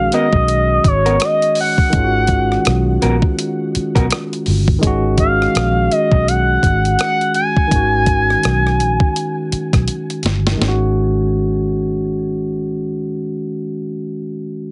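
An expressive synth lead carries the melody up front, its sawtooth-and-triangle tone smooth and mellow with vibrato, coloured by chorus, phaser and plate reverb until it stops at 9.8 s. This soulful, introspective neo-soul and R&B piece sits on a swung sixteenth-note feel over a G#m7 chord, moving to a G#5 chord as a brief second section begins at 10.6 s. Beneath the lead, a barky tine electric piano, bright and lightly overdriven through a combo amp, plays accompaniment with plate reverb, while a dark, round, foam-muted fingered bass adds punchy low end. A gritty, pitched-down boom bap sampler-style kit with a thumpy kick, high-tuned snare, rim click and hi-hat sits up front and plays a fill just before the section change. An electric guitar through a small old amp, slightly broken-up and lo-fi, adds a short second line at the opening. The whole recording has a heavily compressed radio sound with light reverb, and it is cut from a longer piece.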